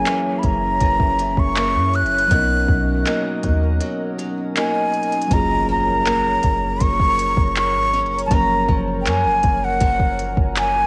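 A breathy, up-front jazz flute carries the melody of this romantic, tender contemporary R&B excerpt over a mellow tine electric piano, bright, boxy archtop guitar arpeggios with tape echo, a glassy, ethereal FM pad with ensemble chorus in the background, a deep, boomy 808-style bass and a drum kit of soft kick, smooth hi-hat and handclaps, with a break at 3.8 seconds and a very quiet electronic impact arriving at 5.4 seconds.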